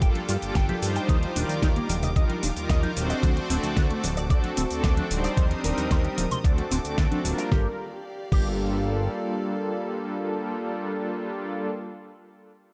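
Opening on a drop, this sleek, sensual nu-disco cut in G minor at 112 BPM sets a thumpy, gritty electronic kick up front alongside a fat, detuned sawtooth analog bass with tube saturation, a layered pop kit with a fat snare, metallic hats, cabasa and crash, and soft-handed congas in the background. A smooth, detuned pad with chorus, tremolo, tape echo and sidechain pumping sits prominently over dark, bowed chamber strings with light vibrato, while a twangy, clean picked guitar through an envelope filter plays a riff through the chords Gm7, Ebmaj7, D7 and Cm7/Eb. The closing section returns to Gm7 at 7.5 seconds, and when the drums and guitar stop at 8.5 seconds, the pad, strings and bass carry on in this excerpt from a longer piece.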